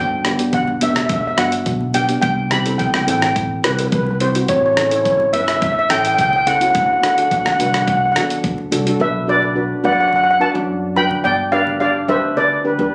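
Calypso at 106 BPM in G major, carefree and sunny, with an up-front, shimmering lead steel pan played with medium rubber sticks carrying the melody through slapback echo and plate reverb, over a mellow double-seconds pan accompaniment on soft rubber sticks. A woody pizzicato upright bass sits low beneath a gritty, compressed sampler-style drum kit of thumpy kick, hi-hat and rim click that stops at 9.0 s, while very quiet, low-tuned congas struck with hard hands add a thick-skinned pulse as the chords move from G through C, A7 and D to Bm and back to G. Captured on a phone in the room, the sound carries club reverb and compression, giving this excerpt cut from a longer piece a casual, live-in-the-space feel.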